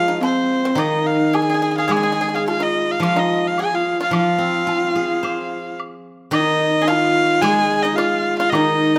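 Close, detailed microphones and a light reverb give this nine-second fragment of a longer Chinese traditional chamber piece an intimate, finely etched sound. The mood is wistful and graceful, moving at 108 BPM in 4/4 with a rubato feel. Up front, a clear, nasal erhu carries the melody with light vibrato, biting attack, airy bowing and portamento slides. Beneath it, a dark, husky horsehead fiddle plays a second line with woody vibrato and its own portamento, while a dry pipa, plucked with fingerpicks, adds a percussive second line from the background. A silvery, ringing steel-string zither, also played with fingerpicks and placed up front, supplies the accompaniment. A close, dry woodblock sits in the background, entering at 0.2 seconds and stopping at 8.7 seconds.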